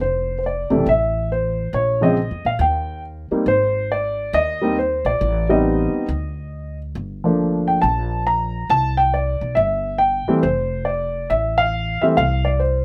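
This jazz piano trio excerpt has a relaxed, warm mood, swinging at 138 BPM in 4/4 with a lilting swing on the eighth notes, in F major and tuned slightly low to A4 = 438 Hz. An upright piano carries the melody from C3 up to Bb5, its tone woody and warm and placed up front in the mix. Beneath it, a pizzicato upright bass with steel strings moves between F1 and Bb2, growly and acoustic, also close and present though set lower in level. The harmony starts on Fmaj7, drifts through Bbm, Eb, Ab and Am7b5, and reaches a brief chordless moment at 6.1 seconds before settling through Gm9 and C69 back to Fmaj7 at 10.4 seconds. A light reverb gives the pair a gentle sense of space as they play together across the full 12.8 seconds of this fragment cut from a longer piece.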